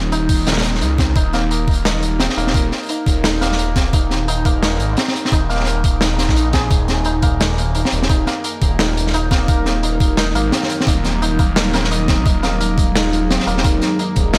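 A hammered santur plays shimmering, ringing arpeggios through a low-pass filter and digital delay over a thick, swirling detuned saw bass with phaser, opening this heavy, dark half-time drum and bass excerpt with a swung feel. A crunchy, gritty breakbeat kit with a medium-tuned snare and hi-hat sits up front, joined by a layered, knocking electronic kick, all set in a small room. At 6.3 seconds a very quiet electronic swell appears, and from 6.7 seconds a deep, moody analog pad holds sustained chords in the background with chorus and sidechain pumping.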